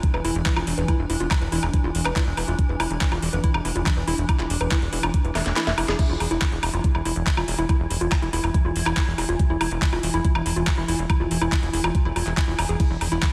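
A light reverb and digital ambience frame this driving, intense slice of psychedelic trance, cut from a longer piece and set in a straight four-four pulse. An up-front electronic kick drum, knocking and tape-warm, anchors the groove alongside a garage drum kit of cracking snare, metallic hi-hats, ride and crash cymbals, handclaps and woodblock, both treated with studio reverb. A punchy, funky analog bass with a sawtooth and pulse-wave bite sits low and forward, its filter pluck giving each note a fast attack and decay. Above it, a woody, wave-folded pluck riff mixes organic percussive snap with a dark sub octave, colored by chorus, cassette-tape grit, sidechain pumping and a diffuse ambient delay. Underneath, a swarming drone of detuned unison sines holds sustained chords with a tense, warbling, granular texture, its sidechain pumping colored by phaser and built-in reverb. A drum fill arrives at 5.4 seconds, and the kick drops out from 5.6 to 6.0 seconds before the drive resumes.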